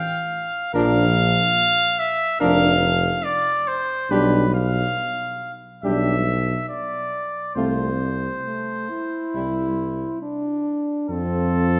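A vintage-toned trumpet carries the melody up front from 0.0 s in this triumphant, noble classical brass quintet excerpt in F major, moving at a rubato 70 BPM as a distant, roomy flugelhorn sings a second line in the background, a warm French horn and a very quiet, smooth-topped trombone with light vibrato add accompaniment from about 0.7 s (the trombone dropping out at 9.7 s), and a close-miked, mellow tuba anchors the bass beneath a lush concert-hall reverb.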